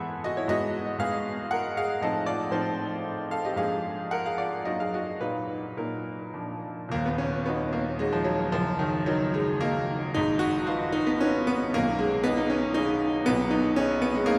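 Rubato phrasing in 3/4 gives this romantic character piece for solo piano a restless sway, with the tempo moving between 103 and 120 BPM. The mood is stormy yet bittersweet, set in E-flat minor and tuned to A4 = 438 Hz. A single concert grand carries everything, its tone bright and brilliant with a slightly worn edge and a deep bass that reaches down to C-flat 1, while its upper range climbs to G-sharp 5. The harmony passes through restless inversions and dominant-seventh colours before a second section opens at 6.9 s, settling on E-flat minor and then turning toward A-flat minor. The piano sounds present, yet the listener seems placed further back in a cathedral, whose long, wet reverb of about 4.7 seconds wraps each chord in a lingering haze. This short passage is cut from a longer piece.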